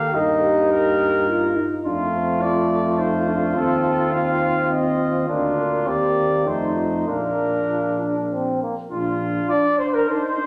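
Set in a reverberant recital hall, this classical brass quintet excerpt has a triumphant, warm mood and a flexible, rubato sway in 3/4. A punchy, mellow trumpet carries the melody up front, while a flugelhorn with light vibrato sings a second line beneath it, both sounding distant and roomy. A present French horn and a clear, softly vibrating euphonium fill in the accompaniment. A dark bass trombone, close-miked with a soft attack and vibrato, anchors the bottom. The trombone falls away at 9.4 s and the euphonium at 10.2 s, leaving the upper voices to close a brief new section that begins at 8.9 s.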